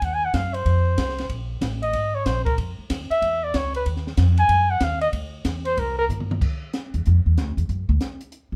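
Sophisticated and relaxed, this short fragment of small-group swing and bop moves at a brisk 188 BPM in 4/4 with a swung eighth-note feel. A warm flugelhorn, up front with a light vibrato and a smooth top, carries the melody as a solo until 6.0 seconds. Beneath it, a pizzicato upright bass with steel strings sounds woody and thumpy, and it steps forward for its own solo from 6.4 seconds. A compact cocktail drum kit in a small room sits lower in the mix, dark and rolled-off at the top, with a punchy kick, a high-tuned snare, hi-hat, ride, crash and toms, and it plays a fill at 6.1 seconds to hand off between the solos. The harmony drifts through colors such as Ebmadd9, Absus2, Dbm and Ebm before moving to Dmadd9 and D, all set in a light reverb.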